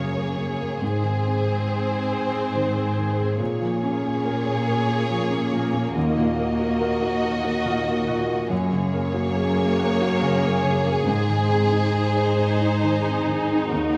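Cinematic, emotional film score in a rubato 3/4 at 70 BPM, moving and full of longing, where two violin sections carry a lush, vibrato-rich melody and second line over a short-sustain grand piano, a distant background viola section, a mellow ringing harp playing arpeggios and a rich, even cello bass, all bloomed by a moderate scoring-stage reverb as the chords drift through Gbadd9, Ab, Bbm7 and Ebm in this excerpt cut from a longer piece.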